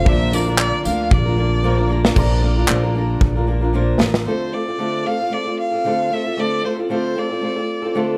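A lightly swung 114 BPM 4/4 groove from a punchy modern studio drum kit with bright cymbals, handclaps, tambourine and drum fills, plus woody pizzicato upright bass, carries this reflective, tender acoustic pop piece in D minor, where a rich, distant bowed violin with vibrato and tape echo sings the melody over fingerpicked steel-string acoustic guitar, a worn, slightly detuned dark upright piano in the background, and a very quiet ethereal pad that sustains chords only until 2.1 seconds, before the bass drops out at 4.2 seconds and the drums and piano at 4.3 seconds to leave guitar and violin on a Dm7.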